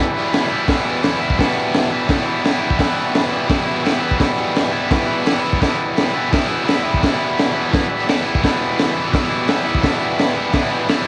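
A raw, lo-fi home cassette sound with light reverb frames this menacing garage rock excerpt, pushing along at 171 BPM in 4/4 on a single E minor chord. A bright, biting overdriven electric guitar, picked and double-tracked up front, drives a riff spanning E2 to E4 from the very start to 11.1 seconds. A crunchy, saturated breakbeat kit enters at 0.3 seconds with a punchy kick, high-tuned snare and hi-hat, its small-room tone dark and gritty with a rolled-off top and a cassette-tape smear.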